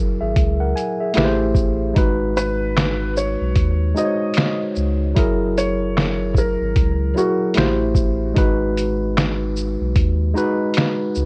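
A worn, warbling old-tape haze hangs over this short, hazy and nostalgic lo-fi hip hop excerpt, where a slightly out-of-tune tine electric piano, passed through cassette tape and a low-pass filter, sits up front with a deep, round sub bass from the start, and a compressed, pitched-down, muffled sampler-style kit of thumpy kick, medium-tuned snare, hi-hat, shaker and finger snaps joins at 0.4 seconds with a swung feel. From 2.4 to 7.8 seconds a felt-muted upright piano carries the melody, soft and intimate with audible action noise, softened further by a low-pass filter and analog delay, over a drifting cycle of F#9, Am7 and G#m7.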